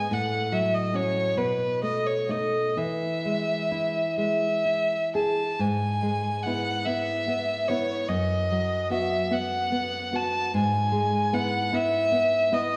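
The music sways in a lilting 6/8 with a free, rubato pulse that breathes around its slow dotted-quarter beat, giving this fragment of a longer piece a lyrical, tender character. A single bowed violin carries the melody up front, its tone rich and intense with a smooth top and a light vibrato. Beneath it, a nylon-string classical guitar plays fingerpicked accompaniment, also close and present, with a full-bodied, deep acoustic sound. Both instruments play together throughout the 12.8 seconds, moving from an opening passage into a second section at 5.6 seconds. A generous recital-hall reverb, as in a church or concert hall, surrounds the duo and lends the romantic phrasing a spacious, resonant glow.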